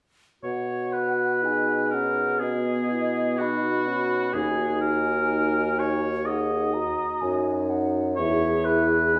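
Serene and warm, this romantic classical movement for wind quintet unfolds in gentle rubato, with a hollow, vibrato-tinged concert flute carrying the melody over an up-front oboe second line, a smooth-topped clarinet and punchy French horn accompanying in the background, and a soft-attack bassoon on the bass, the quintet heard from further back in a wet recital hall.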